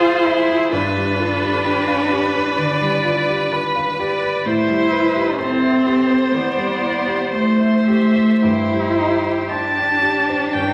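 Rubato in 4/4, this warm, lyrical slow romantic movement for piano quartet, cut from a longer piece, sets a rich, focused violin melody with vibrato up front over a dark, expressive cello second line with portamento, accompanied by a clear, distant viola and a mellow, intimate baby grand piano whose action noise is audible, heard in a wet scoring-stage reverb with vinyl crackle.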